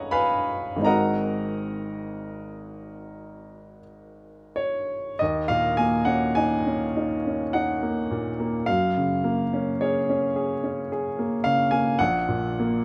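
Impressionist solo classical piano in Eb minor, this nocturnal, mysterious excerpt drifts in a rubato 3/4 at 40-56 BPM, with a clear, intimate baby grand placed up front under close, detailed microphones, its long sustain, audible action noise and light reverb colouring harmonies that move from Abm7 and Ab9 to Ebm7 at 5.2 seconds, then through Gbmaj9 to a Bb(#5) chord omitting the third at 12.0 seconds across a span from Ab1 to Eb6.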